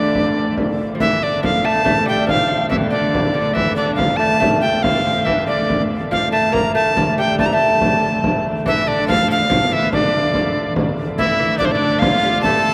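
Set in a rolling 6/8 with a straight feel, this short cut from a longer medieval dance moves with a mysterious yet driving energy. A reedy soprano recorder carries the melody up front, its airy, woody tone marked by tongued chiff and vibrato. Beneath it, a fingerpicked lute on double nylon strings adds a delicate second line, some strings doubled at the octave. A smooth, even hurdy-gurdy holds a close, wheel-bowed drone in the background, while a deep frame drum enters at 0.1 seconds and sounds distant, as if in a large room. At 11.2 seconds a punchy, present shawm joins with a folk-style second line through to the end at 12.7 seconds. The whole performance sits in a lush cathedral reverb with a long, wet tail.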